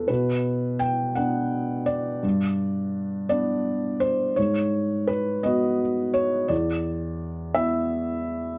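Intimate and reflective, this short cut from a longer neoclassical minimalist piano piece in E minor drifts in a rubato 6/8 at about 56 BPM, with a solo felt-muted upright piano, mellow and up front with audible action noise, spanning E2 to G5 through Bm, G, G#m7 and E5 over 8.6 seconds, captured by close, detailed microphones in light reverb.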